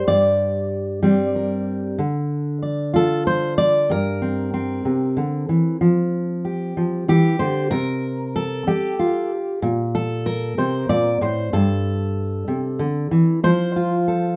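Melancholic and intimate, this short solo folk piece is a fragment lifted from a longer performance, played on a single fingerpicked steel-string acoustic guitar. The dreadnought sits up front in the mix, with a woody, full-bodied tone and the slightly dulled character of old strings. It moves in an unhurried, straight 6/8 lilt, ranging from low G2 up to D5 as it works through minor chords like Gm and Dm. At 5.8 seconds the music turns to a new passage built on open, suspended harmonies such as Fsus2, C7sus4 and Bbsus2, before settling on F near the end. A light reverb gives the guitar a close, personal sense of space.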